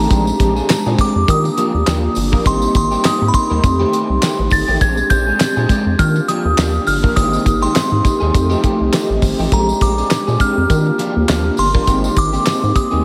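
Feel-good and smooth, this excerpt of early-eighties boogie funk swings lightly over a cycle of Bb13, Ebmaj9, Abmaj7 and F9 chords. A glassy FM synth bell carries the melody up front with chorus and delay, over round, detuned synth brass, a slightly broken-up picked electric guitar riff with ensemble chorus, and a rubbery square-wave bass with a resonant filter pluck. A dry 70s drum kit with a fat snare, tight kick, hi-hat and handclaps sits up front while a jingly tambourine stays in the background, and the whole mix is soaked in cathedral reverb for a dreamy haze.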